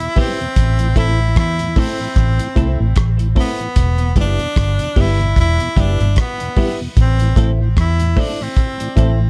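Roots reggae at 75 BPM with a swung sixteenth feel, this serious, laid-back passage from a longer piece moves between Em and Am. A breathy, whispered tenor saxophone carries the melody up close with vibrato and tape echo. Beneath it, a cloth-damped, thuddy drum kit with a tight kick and rolled-off top, a dark, round, foam-muted fingered bass up front from 0.6 seconds, a reedy electric piano playing stabs, a clean picked guitar set back with analog chorus and tape echo, and a very quiet, mellow tonewheel organ through a rotary speaker all sit in a dry, intimate mix.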